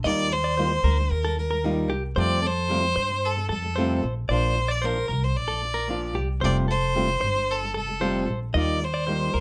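A straight 4/4 pulse at 113 BPM carries this carefree, sunny pop excerpt in F mixolydian, cut from a longer piece and lasting about 9.4 seconds. The upright bass sits up front, its pizzicato notes woody and warm with a steel-string edge, while a boxy, fingerpicked flamenco guitar plucks out the accompaniment, with audible finger squeak. Above them, a clean electric guitar, recorded direct and compressed, picks out arpeggios through Ebadd9, Fadd9 and Bb. The bright violin comes in at 0.1 s with a focused, close melody from a single player, bowed with vibrato and placed up front. A small room adds a moderate touch of reverb, and the rough home-demo mix has a dull, rolled-off top end.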